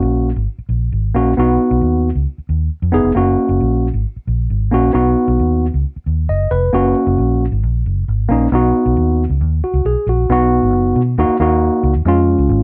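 Moderate studio reverb gives a sense of space to this joyful, uptempo 1960s-style soul excerpt at 134 BPM, where a worn, slightly out-of-tune tine electric piano, lightly overdriven through a combo amp, sits up front beside a dark, round, foam-muted fingered electric bass as the harmony rocks between F# and B before moving to D#m and C# in a new passage from 10.3 s.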